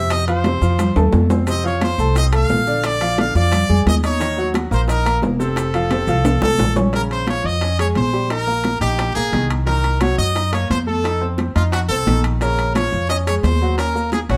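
A moderately reverberant studio sound carries this driving, danceable salsa at 176 BPM in Bb minor: a brilliant, punchy trumpet with light vibrato leads up front over clear grand piano, a woody, thumpy pizzicato upright bass, ringing metal-shelled timbales, bright high-tuned congas, very quiet round bongos and grainy maracas that drop out at 6.9 s and return at 12.4 s, with a couple of drum fills along the way.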